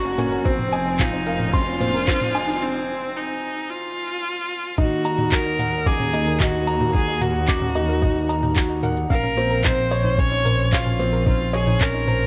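Piano and strings electronica with a melancholic, intimate mood, cut from a longer piece. A clear, intense solo viola carries the melody up front through delay, a filter sweep on it during the opening build-up, while a woody upright piano riff, a rich bowed double bass section with sidechain pumping, and a dark, soft pluck playing chorused, tape-tinged arpeggios in the background fill out the harmony over an organic electronic kit of handclaps, shaker and toms. A very quiet riser sits in the first seconds before a break at 2.6 s, and the muffled, overdriven, thumpy electronic kick drives the drop that arrives at 4.8 s, all within light reverb.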